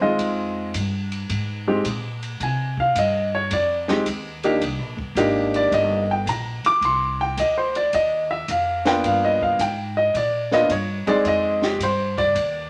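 Set in a wet studio reverb, this cool, late-night jazz piano trio excerpt swings at 108 BPM in 4/4, with an up-front, natural baby grand of short sustain carrying the melody and soloing over Fm9 and Gm7, a woody, thumpy pizzicato upright bass beneath it, and a dark, smooth cocktail drum kit with a punchy kick and high-tuned snare sitting quietly in the mix.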